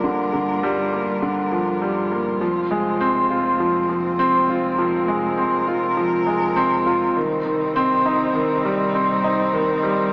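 Melancholic and moving, this short electronica excerpt, cut from a longer piece, sits at 101 BPM in 4/4 with a straight feel in F dorian. A warm baby grand piano plays a riff up front, its natural, short-sustained tone shaded by a low-pass filter and a digital delay. Behind it, a muted string quartet holds sustained chords, dark and veiled with con sordino vibrato, soft attacks and one player per line, fading in across the full 10.1 seconds from a distant place. Far in the background, a rich symphonic double bass section supplies a smooth, even, bowed bass line with lush vibrato. The harmony moves from Gm7 to Fm at 2.4 seconds and settles on Cm at 7.2 seconds, all wrapped in a wet concert hall reverb and heard through a small-speaker sound.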